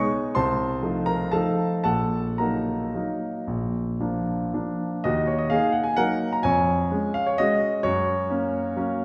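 A wet recital-hall reverb surrounds this short passage, placing the listener further back in the room while the solo grand piano itself sounds warm, present and polished. It is a classical piano waltz in 3/4 and Eb minor, with a nostalgic, elegant mood and a rubato feel that lets the tempo drift between 108 and 140 BPM. The piano plays alone throughout the nine seconds, ranging from a deep Bb1 up to Db6. The opening phrase moves through F7/C, Ebm/Bb and Bb harmonies. At 5.0 seconds a new section begins on Ebm, then passes through Db/F and settles on Gb, as this fragment of a longer piece comes to its end.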